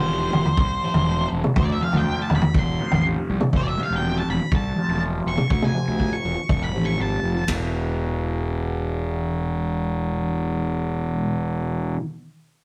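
A straight 4/4 pulse at 122 BPM drives this hypnotic, brooding psychedelic rock excerpt, tuned slightly flat and moving from an F5/E chord to E5. A double-tracked, bright fuzz guitar churns out a low riff through phaser and a low-pass filter sweep, over a growly, up-front overdriven fingered bass and a vintage acoustic kit with a punchy kick, dark ride and toms that plays until 7.6 seconds. Meanwhile a dark octave-fuzz lead guitar solos high above until 7.5 seconds, all caught in a rough, tube-saturated rehearsal-room sound with a small-room reverb.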